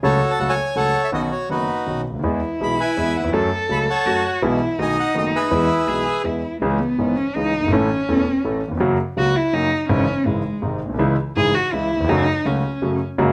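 A reedy, airy bandoneon sings the melody over a clear concert grand piano with deep bass and audible action noise in this passionate, elegant tango, a rubato 3/4 at 164 BPM in E major, all heard up close in a moderate large studio room. A single bowed cello joins at 2.2 seconds as a second line, warm and expressive with vibrato, portamento and a soft attack, and plate reverb touches only the bandoneon, which drops out at 6.2 seconds. From 6.6 seconds the music turns to C# minor and the cello takes a solo over the polished, long-sustaining piano until this fragment of a longer piece is cut off.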